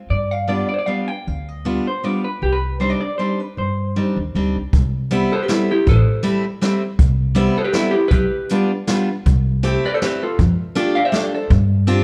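Dark, lightly reverberant production frames this nostalgic, whirling musette waltz, a short cut from a longer piece in 3/4 at 158 BPM. Up front, a clean vintage hollow-body jazz guitar picks the melody, while a woody, growly pizzicato upright bass on steel strings anchors the low end. A picked steel-string acoustic guitar with an auditorium character fills in the accompaniment. The opening, in C harmonic minor, moves from G7 to Cmadd9 before the music turns to C major at 4.7 s, where a brush drum kit enters with a punchy kick, a medium-tuned snare and hi-hat in a natural studio-room sound. From there the harmony glides through Cmaj7, Am7, G7/B, C6 and F69, and the lead guitar drops out at 11.5 s as the bass, acoustic guitar and brushes carry on over a closing G7sus4.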